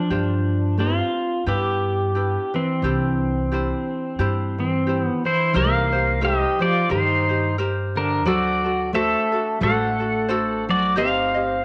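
A relaxed 4/4 swing at 88 BPM carries this dreamy, sunny Hawaiian passage in C major, cut from a longer piece. Up front, a clean, compressed electric pedal steel guitar sings the melody with slide and volume swells, played with fingerpicks. Beneath it, a dark, full-bodied dreadnought acoustic guitar, fingerpicked with audible finger squeak and a slapback echo, carries a lower second line. A light, fingerpicked ukulele fills in the accompaniment, and a woody pizzicato upright bass on steel strings enters at 0.1 s. The harmony drifts from G7sus4 and Cadd9 into a new section at 5.5 s with Cm7 and D7, settling on Cm/G, all bathed in a moderate spring reverb.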